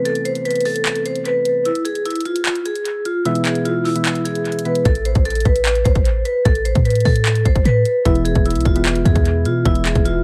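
Menacing and hard-hitting, this trap-flavored hip hop cut moves at 150 BPM in a half-time feel, set in A harmonic minor and taken from a longer piece. A bright, metallic vibraphone struck with medium hard mallets carries the melody up front, its ringing tone shimmering with a fast motor vibrato and trailed by dub echo. Beneath it, soft, round electric-piano-like synth keys warble through chorus and dub echo with a vintage, mellow character, dropping out at 4.9 seconds and returning at 8.1 seconds. The produced trap kit sits up front with a hard-clipped kick, handclaps and warm hi-hats, while a deep, boomy 808-style bass with a dark sine tone arrives at 4.9 seconds once the opening break ends. Harmony alternates between Amadd9 and E in a dry, echo-heavy mix with little reverb.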